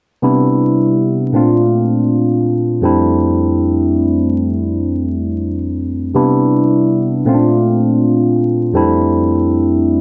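A dark, crackling vinyl haze surrounds this short R&B fragment, set in a moderate studio reverb. The only part is an electric piano with a bright, barky tine bite, lightly overdriven and colored by a phaser, sitting direct and up front in the mix. It plays accompaniment from 0.2 to 10.0 seconds, staying in a low-to-middle register, at an unhurried pace with a gentle swing on the sixteenths. The harmony cycles through lush extended chords, Cmaj9, Bbmaj9 and Fmaj13, then returns to Cmaj9 at 6.2 seconds to run the sequence again. The mood is soulful and smooth, like a passage lifted from a longer piece.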